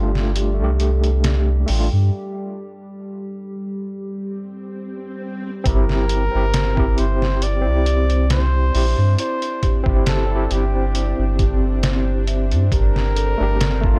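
A trumpet with a bucket mute carries the melody from 5.7 seconds, its veiled, mellow tone sitting present in the mix with scooped notes and a dub echo trailing behind it. This brooding, hypnotic trip hop excerpt rests on a gently swung groove from a sampler-style drum kit that sounds pitched down and compressed, with a thumpy kick, a medium-tuned snare and hi-hat in studio reverb, while a round, deep dub sub bass sits up front. An overdriven tine electric piano plays barky accompaniment through a combo amp with tremolo and 12-bit sampler grit, and a warbling, detuned pad holds nostalgic, lo-fi sustained chords in the background under chorus. A large celesta adds delicate, bell-like arpeggios with tape echo, and a very quiet, tense string-like drone on a single note hovers beneath with vibrato. The harmony moves from a suspended chord to a chord over a steady bass note. A drum break opens at 2.1 seconds, and an electronic swell sounds from 4.5 seconds into the trumpet's entrance, all within a dark, dry production.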